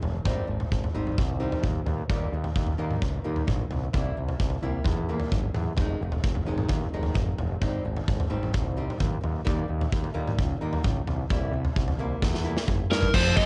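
A big rock drum kit sits up front with a punchy kick, medium-tuned snare and bright cymbals, driving this angsty, cathartic quiet-loud alternative rock excerpt at 130 BPM while a growling overdriven electric bass holds down the low end and a picked acoustic archtop guitar with tape echo plays arpeggios over Abmaj7, Eb, C7 and Fm7. A drum fill from 12.2 seconds leads into the loud section at 13.1 seconds, where a compressed fuzz guitar in the background and a bright high-gain guitar hit a heavy riff, just after a fuzz lead guitar enters up front with a melody at 12.9 seconds. The sound is a dry home cassette recording with muffled top end.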